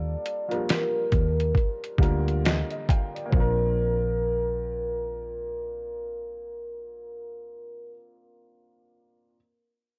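A soft-mallet vibraphone melody, ringing and lightly quivering with slow motor vibrato and tape echo, opens this dreamy, mellow lo-fi hip hop fragment in Bb major at 68 BPM, over a woody upright piano, a dark, round, foam-muted electric bass and a gritty, pitched-down boom bap kit with a thumpy kick that drops out at 3.6 seconds. The piano slips in a fill from 2.0 seconds as the harmony moves from Ebmaj9#11 to Bb, and its chords linger alone after the vibraphone and bass stop at 7.9 seconds. Cassette tape colours the vibraphone, piano and drums, all set in a small, lightly reverberant room with a swung, homemade feel.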